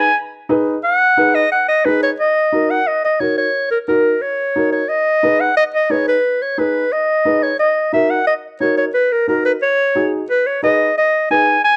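This Latin excerpt in G# minor moves at a brisk 178 BPM in a straight 4/4, with a fiery, danceable mood. A breathy clarinet carries the melody up front and close-miked, its subtoned, vibrato-laden tone and scooped notes giving the line a jazz flavor. The clarinet takes the spotlight as soloist over the opening 2.2 seconds. A dark upright piano supplies the accompaniment, sitting somewhat lower in the mix with a woody, mellow, vintage character. The harmony alternates between G#m and D#m7, and a light reverb adds a touch of space to the sound.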